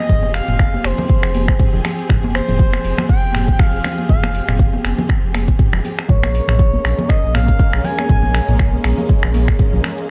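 A smooth, expressive sawtooth synth lead opens this afro house excerpt over dark, woody bowed strings that hold lush sustained chords and pump with sidechain. Almost at once, a deep, round sine sub bass with tube saturation arrives, pumping too, beneath an up-front electronic kick. A produced afro-pop kit adds finger snaps, metallic hi-hats and toms with a swung sixteenth feel. Bright, high-tuned congas played with soft hands and a grainy egg shaker sitting in the background fill out the percussion. The lead carries chorus, vibrato and digital delay, and the harmony moves from Fmadd9 to Bbm7 at 6.1 seconds. The lead stops at 8.8 seconds, leaving strings, bass, drums and percussion in a digital ambience that keeps the mood warm and spiritual.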